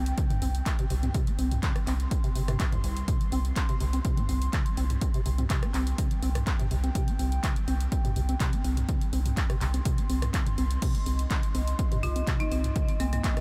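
A driving, straight 4/4 pulse at 124 BPM anchors this raw acid house excerpt in C minor, where a squelchy, resonant square-wave acid riff with overdrive, chorus and diffuse delay rides over a round, deep analog bass, a punchy electronic kick and an analog drum machine of handclaps, hi-hat, rim clicks, toms and crash, all beneath a warbling lo-fi tape-like pad, with a moody detuned analog pad carrying 12-bit grit entering at 11.1 seconds and a woody, hard-mallet folk marimba melody with delay appearing at 12.0 seconds.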